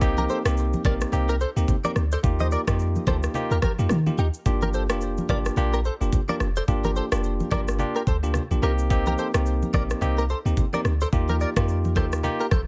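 Afrobeats in G minor at 108 BPM with a swung sixteenth feel, this sultry, hypnotic excerpt cycles through Cm7, Ebadd9 and Gm7 over a deep, boomy 808-style bass with a fast attack and a produced drum kit whose knocking kick, rim click and shaker sit up front beside a bell-like tine electric piano. A twangy, picked clean electric guitar, recorded direct and compressed with analog chorus and digital delay, carries the riff from 0.2 seconds, while low-tuned congas with a thin skin and hard hands stay close and dry in the background. A digital ambience surrounds the mix.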